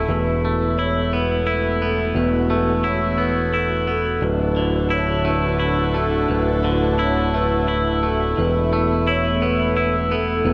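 A twangy, up-front electric guitar picks arpeggios through an analog delay in this soaring, hopeful post-rock passage, a slow 6/8 at 58 BPM cut from a longer piece, moving from Esus4 to Dadd9 and back to Esus4 at 8.4 seconds. A soft-mallet vibraphone adds mellow, airy arpeggios with motor vibrato and its own analog delay, while a growling, overdriven picked bass holds the low end. A dark, intimate string section bowed sul tasto sustains smooth chords beneath, all set in light studio reverb.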